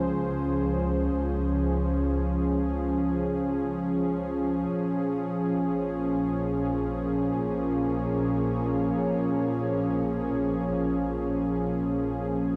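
A detuned sawtooth analog pad sits up front in this serene ambient excerpt, its sustained chords opening with a slow attack and fading on a long release through a shimmer of chorus. Beneath it, a muted double bass section plays con sordino, bowed and distant, its dark, veiled tone carrying a light vibrato and a soft attack. Both parts sound throughout the 12.6 seconds, moving in free time from Dbmaj7 to Bbm7 at 4.7 seconds. A cathedral reverb with a 6.3-second decay bathes the music in a wet, spacious halo, while a cassette tape character lends it a gentle, worn grain. The mood is peaceful, tuned to A4 = 440 Hz.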